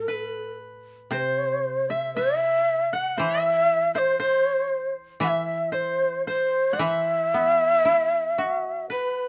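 A breathy, mellow shakuhachi carries the melody up front with vibrato, soft chiffy attacks and an unsteady tone, while two dry, woody koto parts, one tracing a second line in the same register and one giving lower accompaniment, support it in this still, solitary piece of Japanese traditional chamber music at a rubato 58 BPM in 4/4, tuned to A4 = 441 Hz and set in light reverb across a 9.3-second cut from a longer piece.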